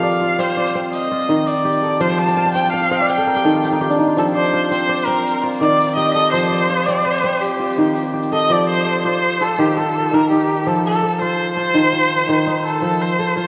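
A clear, focused bowed erhu sings the melody with vibrato and portamento over a ringing, crisp fingerpicked kora, both up front in this warm, flowing West African traditional piece at 111 BPM in a straight 12/8, in F mixolydian. The kora's arpeggios alternate F and Eb chords and break into a fill from 2.0 to 4.2 seconds, while a grainy, bright tube shaker sits low in the mix until 8.4 seconds. A long church reverb surrounds the instruments as the music moves into a new section at 8.5 seconds, cut from a longer performance.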